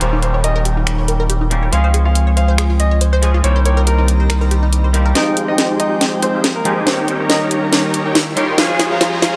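Future bass in F minor at 140 BPM, felt in half-time with a light swing on the sixteenths, this lush, dreamy excerpt is cut from a longer piece. A clear, polished baby grand piano carries the melody with delay, over a twangy, clean electric guitar accompaniment treated with ensemble chorus and digital delay, while an airy, breathy pad with chorus and phaser holds sustained chords in the background, its filter sweeping through the first 5.2 seconds. Until 5.1 seconds, a bright, detuned unison pluck spins arpeggios through digital delay and a thick, saturated sub bass sits up front beneath a trap kit of finger snaps, metallic hats and a sharp snare. At 5.2 seconds the music moves into a build-up with a drum fill, as huge, detuned supersaw chords enter with a riff under a sweeping low-pass filter, and a very quiet downlifter and riser frame the opening and closing moments. The chords move from Eb7 through Dbmaj7 and Cm7 to Fm9, then return through Eb7 to Dbmaj7, all set in light reverb and digital ambience.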